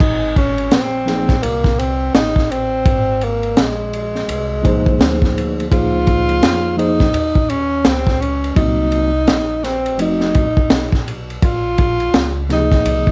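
A relaxed, swung groove at 84 BPM in 4/4 sets the pace for this warm jazz-hop excerpt in Ab major, with a crunchy breakbeat kit up front, its punchy kick, high-tuned snare, hi-hat, and dark ride and crash cymbals sitting in a small, rolled-off room sound. Underneath, a woody pizzicato upright bass plays low and dark from the first second. A breathy tenor saxophone carries the melody as an up-front jazz solo, its subtone delivery adding vibrato and scooped notes with a smooth top. From 1.1 s a mellow tine electric piano joins with clean accompaniment through its built-in speakers, moving through Ab69, Db69, Cm7b5 and F7b9 before settling on Bbm11. Cassette tape coloring on the sax, drums and piano, moderate studio reverb and a home-recorded, muffled top end give the whole cut a lo-fi haze.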